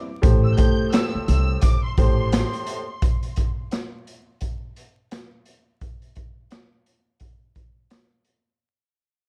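Boom-bap hip-hop with a dark, moody cast and a lazy swing, cut from a longer piece and fading out from start to finish. A worn, slightly detuned upright piano with audible action noise and long sustain opens the excerpt and settles onto an Am7 chord, filtered into a boxy, intimate tone, joined by a woody, thumpy pizzicato upright bass. High above, a lush bowed violin section with smooth vibrato drifts in briefly through filtering and analog delay, sitting low in the mix. The raw garage kit of boomy kick, medium-tuned snare, hi-hat and handclaps sounds gritty and saturated, with a rolled-off top and a pumping small-room sound placed up front. At 3.0 seconds the harmony drops away into a break, and the drums carry on alone until 8.4 seconds under light reverb, vinyl crackle and a dark, warm production.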